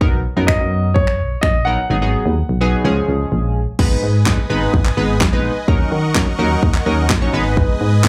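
A punchy, up-front electronic pop drum kit drives this bittersweet yet confident dance-pop excerpt at 127 BPM in straight 4/4, layering a fat snare with a kick, handclaps, finger snaps and a crash cymbal. A round, mellow FM bass and glossy, chorused retro synth keys, built from pulse and sawtooth tones with a filter sweep and slapback echo, both pulse with sidechain pumping throughout. A polished grand piano carries a short melody from 0.5 s, its present, short-sustained notes colored by tape and slapback echo. The drums drop out at 1.9 s over chords moving from Bmaj7 through Abm7 to Db, then return at 3.8 s as huge, lush detuned supersaw chords enter over an Abm and Ebm7 passage. The whole thing sounds like a live gig heard through a venue's PA, with club reverb around the mix.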